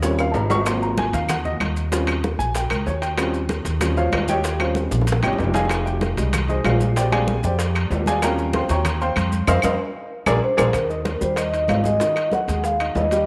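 Afro-Cuban jazz with a sunny, danceable feel, this clip from a longer piece opens on an intimate baby grand piano soloing up front, its action noise audible, over a thumpy, dark upright bass played pizzicato on gut strings. Behind them sit thick-skinned congas, tight high-tuned bongos, woody claves and grainy, saturated maracas, while distant metal-shell timbales ring in a large room. Drum fills punctuate the groove, and the band hits an accent at 9.5 seconds. At 10.4 seconds a mellow vibraphone with soft mallets and slow motor vibrato takes the melody, and the mix sits in a moderate echo chamber reverb with small room ambience.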